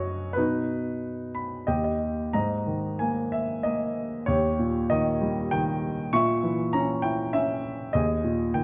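In a rubato 3/4 that drifts between 89 and 101 BPM, this relaxed classical excerpt features a lone grand piano, spanning D#2 to C#6, with a natural, up-front tone and short sustain. A brief piano fill runs from 1.0 to 2.3 seconds before a new section takes over, the harmony moving from B and D# through G#sus2, A#dim and a closing D#sus4. A moderate recital-hall reverb and a dark, warm production wrap the lyrical playing.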